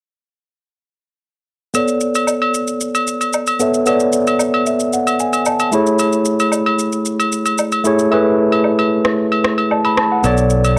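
A barky, bright tine electric piano sits up front from 1.7 seconds, carrying the chords through a low-pass filter sweep and adding a short fill at 4.4 seconds. This late-night, hypnotic amapiano cut moves at 113 BPM in a straight 4/4, settling in B dorian and shifting from Bm9 to Amaj9 before returning to Bm9. Layered electronic shaker and rim click keep the groove behind it, while close, dry agogo bells and woodblock add acoustic colour. A fingered electric bass arrives only at 10.2 seconds, direct and warm on a low B, just as the fragment is cut from the longer piece. Light reverb and a gritty, cassette-tape hardware sound give the whole recording a dry, gritty character.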